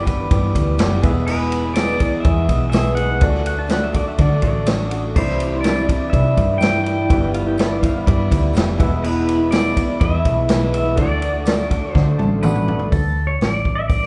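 This short cut from a longer piece sounds like a band playing in a reverberant church or concert hall, with a lush tail and a dulled top end. It is jangly, hopeful folk rock leaning toward heartland rock, in a straight four-beat feel. A twangy, clean pedal steel guitar carries the melody with fingerpicked slide phrases and volume swells, and a second pedal steel line joins from 3.5 to 8.9 seconds. Up front, a vintage acoustic kit with a punchy kick and medium-tuned snare drives the band, over a round, dark hollow-body bass, a slightly broken-up electric guitar riff through a small old amp, and a woody, boxy acoustic guitar with old strings sitting in the background. A brilliant upright piano and a jingly tambourine are very quiet, and at 11.9 seconds the drums and piano each play a fill before a brief closing section.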